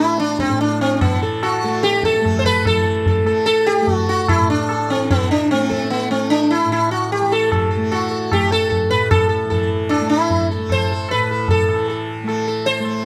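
Close, detailed microphones and a light reverb give this Hindustani classical recording, cut from a longer piece, an intimate, clear sound. In raga kafi on A, at 149 BPM in 4/4 and gradually speeding up, a bright, buzzing sitar sits up front with shimmering sympathetic strings, carrying a longing, meditative melody over a softly plucked, shimmering tanpura drone. A low-tuned tabla with a short ring joins at 0.2 s and plays in a live room.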